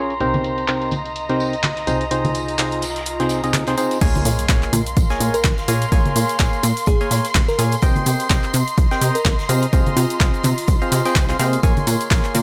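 A bittersweet, soulful piano house cut at 126 BPM in Bb dorian opens with hollow, chorused organ stabs up front, a plucky, funky analog bass with tube saturation, a breathy pad and lush bowed strings in the background, all pumping against the beat, while a dry, overdriven drum machine with claps, hi-hat, shaker and crash, soft-handed tambourine and congas, and a very quiet swinging big-band kit add a light 16th-note swing. At 4.0 seconds the drop lands with a punchy, overdriven kick and a distant electronic impact. At 5.3 seconds a sparkling, bell-like FM electric piano with chorus and delay carries the melody over a Cm7, Fm7/C and Bbm7 cycle, all under light studio reverb and a low-pass filter.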